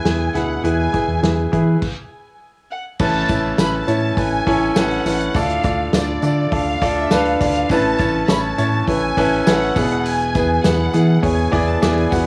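With light reverb and a small-room, cassette-tinged home-studio feel, this hopeful, anthemic piano-driven pop fragment opens on a clear, up-front baby grand carrying the chords, a dark, lush bowed violin section singing the melody with vibrato and portamento through a tape-worn haze, and a round, deep analog bass underneath. A natural country drum kit with a punchy kick, medium-tuned snare, hi-hat and crash, its sound also tape-colored, drives the groove, then everything pauses in a stop from 1.8 to 3.0 seconds. A jingly, distant tambourine joins in the background at 3.0 seconds as the harmony moves from Aadd9 through D minor and back toward E.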